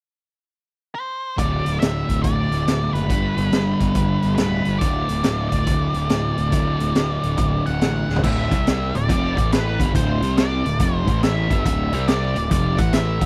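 A swung 4/4 groove drives this swaggering blues rock and southern rock power-trio clip, where a dark octave-fuzz lead guitar with wah enters alone at 0.9 seconds before the band crashes in at 1.4 seconds. A double-tracked fuzz guitar riff sits over growly, overdriven picked bass, while a gritty garage drum kit with a high-tuned snare and boomy kick plays up front and throws a fill at 8.0 seconds into a churning section that cycles around D. The sound is dry and close, like a 1970s-style session in a small room.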